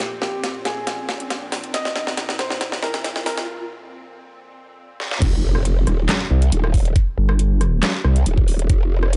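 A saturated, growling bass dominates this menacing slice of heavy wobble dubstep, arriving up front at the drop at 5.2 seconds with overdrive, chorus and a formant-filtered wobble. It is joined there by a knocking electronic kick, and at 7.2 seconds a brief nasal, resonant vowel-sweep wobble bass sits on a single low G. Before that, the fragment opens as a build-up in F minor at 138 BPM in a half-time 4/4 feel: a clear baby grand piano carries a short melody through delay until 3.5 seconds, over an evolving wavetable pad whose detuned, morphing chords pump against the sidechain in a bright wash of ensemble chorus and built-in reverb. A layered dubstep kit plays fills with a deep snare, metallic hats, handclaps, rim clicks and crash cymbal, all re-recorded in a small room, while a riser and impact rise from the background. The production is dark and warm, with light digital ambience and a rolled-off top end.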